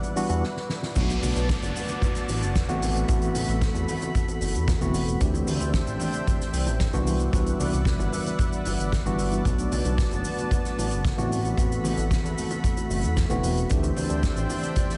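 A small room's light reverb and a softened top end frame this short nu-disco cut, a groovy, sensual passage in A dorian at 113 BPM in a straight 4/4. A tine electric piano carries the accompaniment through a combo amp, its clean tone coloured by medium tremolo, tape echo and vintage 12-bit sampler grit. Beneath it, a lush unison pad of detuned sawtooth and square waves holds sustained chords with a slow attack and long release, warbling through chorus and pumping against the sidechain. A soft-mallet acoustic kit plays dark cymbals, hi-hat, shaker and a fat snare, with quiet bongos and congas under soft hands. A glossy, retro chorused synth bass enters at 0.3 seconds, blending pulse, sawtooth and sine tones with a filter sweep, and a brief drum fill at 0.4 seconds leads into the drop at 1.0 seconds. There, a boomy big-room kick arrives, while a background downlifter runs until 5.2 seconds. 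The harmony cycles through Cmaj9#11, Bm7, Am69 and D9sus4, giving the cut a smooth, late-night glide.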